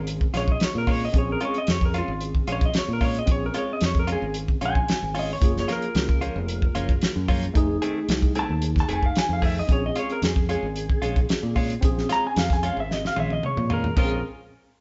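A saturated, up-front soul drum kit with a fat snare and dark cymbals drives this smoky, soulful straight-eighth soul blues in Bb minor at 112 BPM, beneath a dark, compressed slide lap steel melody, a worn, slightly out-of-tune tine electric piano lightly overdriven through its built-in speakers, warm fingered electric bass and clean picked stabs from a direct-recorded electric guitar, all moving from Bbm7 through Gbmaj7 and F7#9 back to Bbm7 in a stone room, with a drum fill at 12.9 seconds closing the 14.2-second excerpt.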